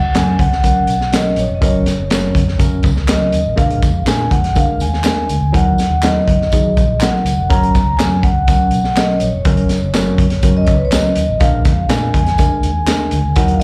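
Uptempo 1960s-style soul at 122 BPM in F# major, danceable and uplifting, captured as a live gig through the venue's PA with club reverb, where a mellow, ringing soft-mallet vibraphone with slow motor vibrato and slapback echo carries the melody over a round, foam-muted fingered electric bass, a worn, slightly out-of-tune tine electric piano with phaser and slapback echo, an up-front, gritty breakbeat kit with a punchy kick and high-tuned snare, and low-level handclaps and tambourine with slapback echo, all in a short cut from a longer piece.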